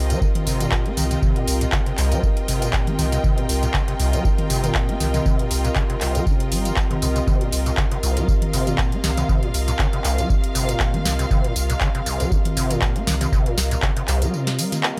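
This trippy, hypnotic acid house piece has a digital ambience, with a squelchy, gritty overdriven acid bass riff thickened by distortion, lush chorus and tape echo, and a filter sweep running through its full 15 seconds. At 119 BPM in C minor with a light 16th-note swing, a dry, deep electronic kick and a booming analog drum machine of crisp snare, metallic hats, handclaps, tambourine and toms play alongside a round sine sub bass that stops at 14.3 seconds. A detuned, moody analog pad holds a Cm7 chord beside a bowed string section with vibrato, both pumping with sidechain, in this excerpt from a longer piece.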